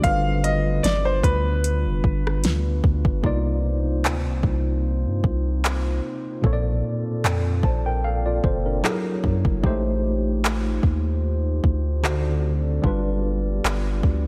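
A deep, mellow 808-style bass with long decaying sine notes anchors this moody, late-night contemporary R&B excerpt at 75 BPM in C dorian, where an up-front, overdriven electronic drum kit of soft kick, fat snare, metallic hi-hats, rim clicks and handclaps sets a gentle 16th-note swing, a worn, slightly out-of-tune electric piano with light overdrive plays accompaniment, an ethereal glass harmonica holds slow-blooming chords, and a clear baby grand piano with digital delay carries the melody only until 2.4 seconds, all in light reverb over chords moving from G7 through Cm11 and F#9 back to G7.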